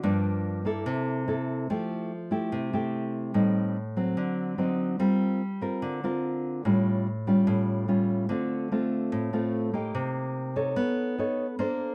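A straight 4/4 bossa nova pulse at 145 BPM carries this breezy, sophisticated fragment of a longer piece in F major, where a lone thumb-plucked nylon-string guitar, classical in tone and placed up front in light reverb, moves through rich jazz harmony such as Fmaj9, D7b9 and Aaug7 across a range from G2 to Db5.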